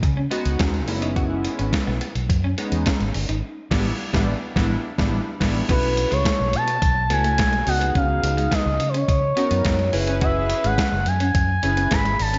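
Early-eighties boogie funk at 106 BPM in a straight 4/4, smooth and danceable, set in B mixolydian and cut from a longer piece. A crisp 8-bit digital drum machine sits up front with a thumpy kick, a medium-tuned snare, hi-hat and crash, its sampler-style hits re-recorded in a large room, while a dark, round, punchy fingered electric bass drives underneath. In the background a clean, picked electric guitar plays a riff through lush chorus and slapback echo, and from 0.3 seconds a retro, glossy polysynth built on pulse and sawtooth waves supplies sustained chords with pulse-width modulation and a filter sweep. The harmony moves through suspended ninth chords, C#9sus4 to F#9sus4 to A9sus4, with a band accent from 3.4 to 5.7 seconds. At 5.7 seconds an expressive sawtooth lead enters up front with vibrato and portamento, its mellow tone carrying the melody over chorus and slapback echo. A moderate hall reverb gives the whole a big arena sound with a softened, dusky top end.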